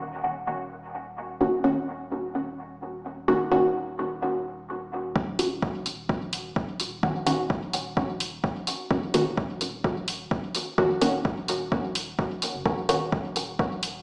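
A wet spring reverb and the echo of a stone room give this dub techno excerpt a cavernous, meditative air, as if played on a big sound system in a bare room yet heard through a small speaker. A deep, clean sine sub bass sustains in Eb minor from 0.0 seconds, pumping under sidechain at a straight 128 BPM in 4/4. At 1.4 seconds a muted, detuned chord stab steps up front, its sawtooth and pulse-wave tones shaped by a filter pluck with a fast attack and short decay, then colored by phaser and trailing dub echo. The harmony holds off until 5.2 seconds, when a punchy, layered electronic kick drum arrives on an Ebm7 chord. An electronic hi-hat follows a moment later, and both drums sit up front, with a low-pass filter dulling the hats and percussion. This is a short cut from a longer piece, steeped in deep space.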